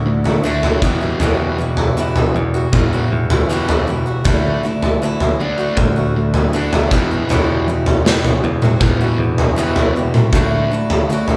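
In a straight 4/4 pulse, this brooding, cathartic excerpt of quiet-loud alternative rock moves between Dadd9 and Emadd9 chords. Boxy, swing-style acoustic guitar arpeggios sit beside a sludgy, overdriven electric guitar riff, while a growly, punchy electric bass stays in the background until it stops at 10.6 seconds. An up-front acoustic kit with a bright stone-room sound, a punchy kick, medium-tuned snare and toms drives the band, which plays live together in one room with light reverb.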